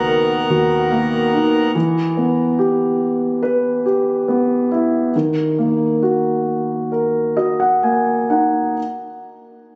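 Tender and heartfelt, this short pop excerpt moves in straight 4/4 at a slow 63-72 BPM, cut from a longer piece. A warm concert grand piano with a deep low end carries the accompaniment throughout and sits up front. For the opening 1.7 seconds it is joined by a reedy, breathing pedal harmonium holding sustained chords and a dark, round, foam-muted vintage electric bass that sounds amped and punchy beneath them. From 1.7 seconds the tempo slows as the harmony passes from Bmaj7 to Em and then D#madd11, leaving the piano alone to close with a fill from 6.9 seconds. A moderate plate reverb and a club-like room give the recording space, while the phone-captured, compressed sound tops out below 7.9 kHz for a dulled, intimate edge.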